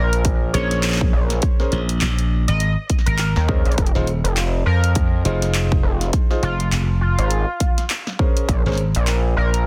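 A gritty, nasal synth bass with a saturated, filter-swept sawtooth tone sits up front in this funky, swaggering glitch hop excerpt at 102 BPM, swung on the 16ths in Bb minor, joined by a bright, growly slap bass and a punchy overdriven electronic kick. A dubstep kit of handclaps, hi-hat and a deep overdriven snare rides beneath an edgy, tearing sync lead melody with chorus, vibrato and digital delay, while vintage grand piano stabs, entering at 0.5 seconds, pump with sidechain compression through their own delay. The chords move from Bbm9 to Fm7 at 3.8 seconds and back to Bbm9 at 8.5 seconds, all in a dry, dense, heavily limited modern mix.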